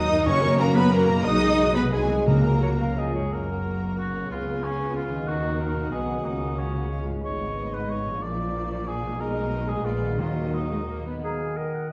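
Restless and stormy, this rubato orchestral passage in triple time sets a distant, intense violin melody over a lush bed of second lines from mellow cor anglais, airy flutes and a very quiet, soft-attack violin section, while rich violas, a mellow French horn section and ringing fingerpicked harp arpeggios fill in the background. Cellos and double basses anchor the bass with a rich, bowed weight, soft-mallet timpani enter from 0.3 s, and a smooth-topped clarinet surfaces briefly around 2.6 s. The harmony darkens into a minor key from 7.3 s, and the dark production sits in a roomy recital-hall reverb.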